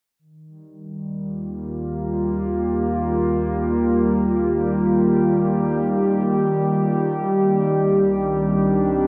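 Peaceful and weightless, this ambient excerpt in Eb major drifts in free time, fading in from 0.2 seconds as a mellow, nostalgic tape-like pad arrives up front at 0.9 seconds, holding detuned, chorused chords that move from Ebadd9 to Cmadd9 at 6.9 seconds. A deep, ominous drone rumbles underneath from 1.3 seconds, dark and vintage in tone. The sound is lo-fi, soaked in huge reverb, and colored by worn cassette warble and pitch drift, tuned slightly sharp at A4 = 441 Hz.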